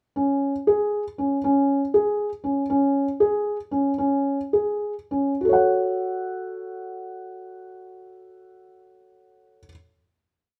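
Pensive and restless, this brief contemporary chamber piece in F# minor and 5/8, moving at 197-239 BPM in eighths, features a solo felt-muted upright piano playing a dark, boxy, intimate ostinato up front in light reverb, slowing down from 2.7 s before resting on a final F#m chord at 5.4 s.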